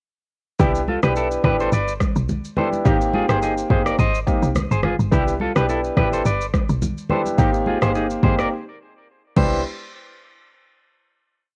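A lightly swung afrobeats groove at 106 BPM carries this short, sunny and romantic home cassette recording, where an overdriven, up-front electronic drum kit with a deep kick, syncopated rim clicks and shaker, a woody, punchy log drum bass with its bouncy syncopated line, clear, polished grand piano chords with long sustain, a clean picked electric guitar figure doubled in thirds through tape echo, and soft-handed, high-tuned congas in the background all play over a progression alternating Cmaj7 and Abmaj7 until a break at 8.5 seconds and a final hit at 9.7 seconds.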